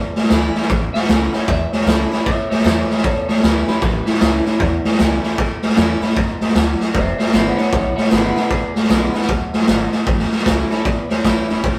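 A raw garage drum kit sits up front in this rowdy, retro rockabilly excerpt, its boomy kick, medium-tuned snare and hi-hat gritty and saturated with a rolled-off top, driving a swung 154 BPM in A major with a single move to E7 at 7.0 seconds. A clean, twangy electric guitar through a small old amp, bright and slightly broken-up, takes a picked solo from 0.9 seconds, over a full-bodied dreadnought acoustic guitar picking its accompaniment and a woody, thumpy pizzicato upright bass on dark gut strings. The rough rehearsal-room sound carries little reverb and a warm saturation, with the harmony returning to A at 10.1 seconds as a new section begins.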